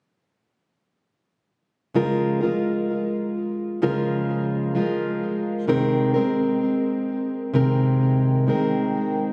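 A lush hall reverb and the club ambience of a phone recording frame this brief, hopeful and tender pop excerpt at 64 BPM in Db major, where a solo fingerpicked, plugged-in jumbo steel-string acoustic guitar with fresh strings, a full-bodied tone and delay sits up front from 1.9 to 9.3 seconds, moving from Db6 to Abadd9/C.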